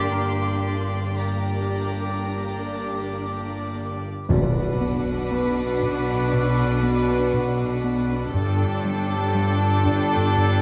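A round, deep analog bass with a filter sweep enters at 4.3 seconds beneath the strings of this mysterious, eerie suspense film score excerpt, moving at a slow 59 BPM in 4/4 from Gm through Bm to Gsus2. A huge, bright impact strikes at the same moment and rings until 8.3 seconds, while timpani played with hard mallets sound briefly in the background. From the start, a symphonic string section sustains the harmony: a floating, pure violin second line played sul tasto, woody viola accompaniment with vibrato, and cellos and double basses forming a rich, distant low foundation with soft attacks. Above them, a shadowy chamber violin section carries the high melody with vibrato, set back in the background. A thumb-plucked concert harp adds a very quiet, ringing texture until 8.4 seconds, and the whole passage sits in the ambience of a wet stone room.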